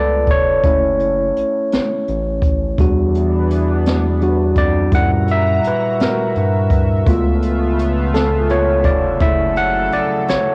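An overdriven tine electric piano leads this excerpt of slow, sultry six-eight R&B at 56 BPM, taking a gritty, barky solo up front through a combo amp with cassette-tape colour across the full 10.5 seconds. Beneath it, a round, deep analog bass holds the low end while a jazz kit played with brushes adds a high-tuned snare and boomy kick. A shimmering, chorused pulse-width pad with a slow attack joins at 2.8 seconds under chords moving from F#m7 through Em7 and F#7b9 to C#7alt, all bathed in moderate spring reverb for a late-night, home-recorded feel.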